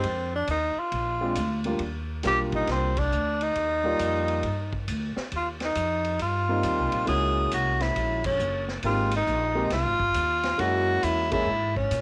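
Swinging eighths at 136 BPM in 4/4 drive this warm small-group jazz piece in Eb major, where a clear, up-front tenor saxophone carries the melody with vibrato and scooped notes over a deep-bassed concert grand piano coloured by cassette tape, a woody pizzicato upright bass with tube saturation, and a vintage drum kit of hi-hat, kick, ride and snare with dark cymbals, a punchy kick and a high-tuned snare, also on cassette tape, as the band hits accents at 2.9, 8.2 and 11.3 seconds within a lightly reverberant home-cassette sound.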